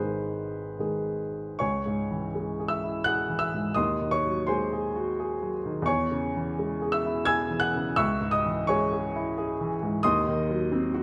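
In a 3/4 at about 85 BPM, the beats stretch and give with rubato, so the pulse never settles into strict time. This romantic character piece for solo piano sits in C# minor and carries a bittersweet, stormy mood. A single upright piano plays throughout the 11-second fragment of a longer work, its tone woody and natural, placed up front by close, detailed microphones that catch every note. Its range spans from a deep G#1 to a bright G#6, and a light reverb lends the sound a touch of air. A brief opening on G# gives way at 1.6 seconds to a passage that circles through C# minor, a G#7 over D#, and C# minor over E, before closing on a Cdim over Eb that leaves the harmony unsettled as the excerpt ends.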